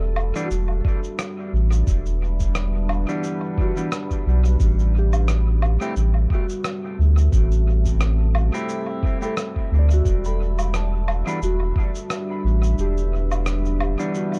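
A round, deep sub bass sits up front in this hazy, meditative ambient dub excerpt, joined by a thumpy, muffled electronic kick from 0.8 seconds until it falls away at 11.9 seconds. Around them, a dark, detuned ambient pad holds slow-blooming chords through chorus and reverb, while a pure FM synth bell traces mellow arpeggios through tape echo. Clean stabs from a semi-hollow electric guitar carry 12-bit sampler grit, and compressed woodblock, cabasa and rim click drift in dub echo over a swung groove that moves from Em7 to Am7 and back within an echo-heavy digital ambience.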